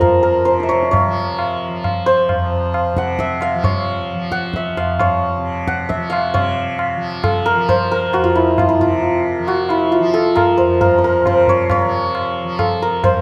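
Hindustani classical music in a devotional, meditative mood, moving at 134 BPM in 3/4 with a straight feel and tuned to A4 = 439 Hz; this is a passage cut from a longer piece. A hammered, shimmering santur carries the melody up front from E4 to Gb5, over a softly plucked, buzzing tanpura drone held lower in the mix from F2 to F3, while a low-tuned, close tabla provides the percussion. All three play throughout the full 13.2 seconds in a wet recital hall, and the music shifts into a new section at 6.3 seconds.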